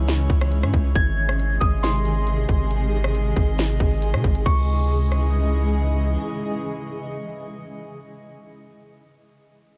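A tape-warm trap kit sits up front in this melancholic, ethereal cloud-rap excerpt, its hard-clipped kick, sharp snare and crisp hats setting a half-time feel until 5.2 s, alongside a deep, sine-based 808 bass that decays through to 6.2 s. A blurred, detuned granular pad with reverb and tremolo holds the chords beneath a glassy texture of drifting overtones with chorus, and both run throughout. A soft, vintage FM bell carries the melody from 1.0 s, its warbling tone shaped by chorus, low-pass filtering and digital delay.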